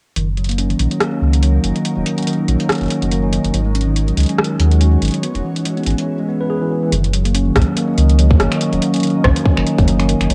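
This glitchy, intricate IDM fragment opens at 0.2 s with a round sine sub bass, a clean tine electric piano playing arpeggios, and a dry analog drum machine, together at 142 BPM in 4/4 with a 56% swing on the sixteenths in F# mixolydian. The sub bass sits deep and up front with tube saturation, while the electric piano, also up front, runs through a low-pass filter and tape echo, and both parts carry filter sweeps. The drum machine supplies finger snaps, rim clicks and metallic hi-hats, and a glassy FM pad drifts in beneath with sustained, ethereal chords that warble through ensemble chorus, sidechain pumping and its own dark reverb. The harmony moves from F#6 to G#7sus4 and E6 before returning to F#6 as a new section begins at 6.9 s, and a tight electronic kick joins in the background at 7.6 s. The whole piece has the lo-fi feel of a home cassette recording with light reverb, and the pad, piano, drum machine and kick each carry a cassette-tape coloring.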